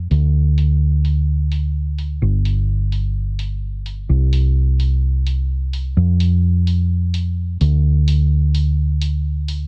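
A dry recording with little reverb opens this short cut from a longer piano house track, set at 128 BPM in 4/4 with a light 16th-note swing and a feel-good, uplifting mood. A hollow-body short-scale electric bass, played with the fingers, carries the low end from the start, sitting up front with a dark, round, punchy amped tone in the range of G1 to F2. Beneath it, an electronic hi-hat enters at 0.1 seconds and runs to 9.6 seconds, an analog sound re-recorded in a small room and heard far lower in the mix. The hat is shaded by a low-pass filter that dulls its top. The whole passage stays in a single section, giving the groove a steady, buoyant pulse from start to finish.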